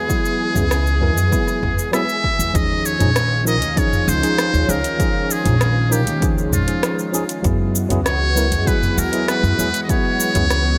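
Lightly reverberant, this smooth, sunny sunset chillout excerpt at 98 BPM sets a breathy, buzzy metal-muted trumpet melody with delay up front over a lush, detuned sawtooth unison pad treated with chorus and phaser, a worn, slightly out-of-tune tine electric piano with 12-bit sampler grit and delay that carries a filter sweep until 2.5 seconds, a very quiet twinkling granular shimmer that ends at 2.6 seconds, a punchy overdriven electronic kick, a produced R&B kit of metallic hats, cabasa, rim clicks and toms, and a woody, thumpy pizzicato upright bass that enters at 0.6 seconds beneath Gb9sus4 and Eb9sus4 chords.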